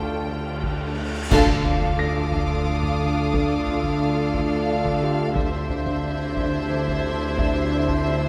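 A tense, mysterious cut from a suspense film score opens on lush, bowed strings in D minor at 89 BPM in 3/4, with a close violin section carrying the melody over a second violin line, a very quiet viola accompaniment and a focused cello riff. Beneath them, cello and double bass sections hold the bass while a sawtooth analog drone with chorus holds a low D and a warbling, lo-fi tape-like pad with chorus and built-in reverb sustains dark chords. High violin texture and a very quiet baby grand piano with short sustain add a faint shimmer, and a huge cymbal swell rises from 0.6 seconds as a taiko ensemble with hard sticks enters in the background. At 1.3 seconds the harmony settles on D minor with a band accent: clash cymbals and concert bass drum strike, and mellow French horn and soft-attack trombone sections join with sustained chords. The strings, brass and drums continue through a move to Cadd9 over D at 5.4 seconds, all set in a moderate scoring stage reverb.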